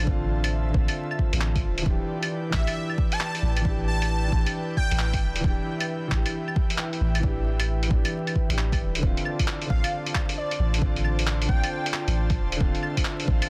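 A dense, heavily limited master dusted with vinyl crackle and little reverb frames this wistful, rainy future garage excerpt, swung on the sixteenths. A dark, woody upright piano with vintage 12-bit sampler grit and dub echo pumps under sidechain alongside a breathy, detuned pad and a round, sine-toned 808-style bass, while an overdriven electronic kick and a muffled, pitched-down sampler kit of claves, handclaps and hi-hat carry the beat. An airy, dreamy lead with vibrato, portamento and delay sings two short phrases, from 2.5 to 5.1 seconds and again from 9.7 seconds, over harmony that moves from Dm7 to Em7/D and back to Dm7.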